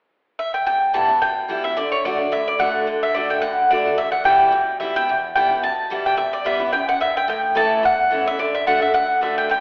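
Bluegrass at a brisk 218 BPM in 4/4, this short excerpt cut from a longer piece has a driving yet lonesome mood, with a light swing on the eighth notes and a modal E dorian color. A woody, double-strung mandolin carries the melody up front from 0.4 seconds, sitting in a high register between C#5 and A5. A bright, full-bodied dreadnought steel-string guitar, also picked and up front, joins at 0.7 seconds with accompaniment spanning E2 to F#4, mixed a bit lower than the mandolin. The harmony moves through Em, D, back to Em, then A and D. A wet recital-hall reverb with a long tail surrounds the playing, and the overall sound carries a telephone-like quality, as though recorded in a church or concert hall.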